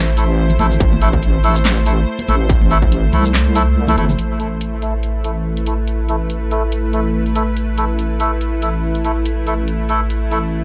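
Dark and cavernous, this deep dubstep excerpt moves at 142 BPM in A minor with a swung, half-time feel, anchored by a deep, up-front square-wave wobble bass with chorus and a tense, string-like drone of detuned sawtooth chords, ring modulation and vibrato washed in reverb. Reedy, breathy melodica stabs pass through dub echo and a low-pass filter that sweeps from 4.2 seconds, while a punchy deep house kit of snare, handclaps, hi-hat and shaker plays alongside bright, saturated congas that run until 4.2 seconds. A distorted, tape-warm electronic kick sits in the background from 0.8 to 2.9 seconds, and the whole has a dry, gritty hardware sound in a digital ambience.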